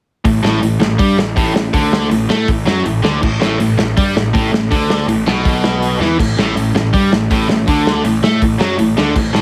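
Heavily compressed and radio-like with light reverb, this energetic, upbeat punk rock excerpt drives in straight 4/4 on an A5 chord, as two bright, picked, distorted electric guitars hammer out riffs (the tight one up front joining at 0.3 s), a growly, punchy fuzz bass pushes underneath, and a loose, up-front acoustic kit with dark cymbals and a punchy kick snaps through a drum fill at 6.0 s.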